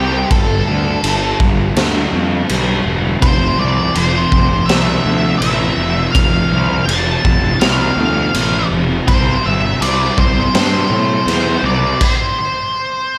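A steady, straight 4/4 pulse at 82 BPM drives this short, hazy cut from a longer rock piece steeped in shoegaze and dream pop, set in C major. A raw garage drum kit sits up front with a punchy kick, a high-tuned snare and crash cymbal, its gritty, saturated sound carrying a bright stone-room character and a rolled-off top. Beneath it, a picked electric bass runs overdriven and growly, direct and amped, while a double-tracked fuzz guitar plays a dark riff colored by analog chorus. Over them, an octave-fuzz lead guitar carries the dreamy melody in a warm, distorted tone with slapback echo, and the chords move from G5 to Fmaj7(no3) and on to C5. The band stops around 12 seconds, while the lead guitar carries on alone until 13.2 seconds, all set in light reverb and small room ambience.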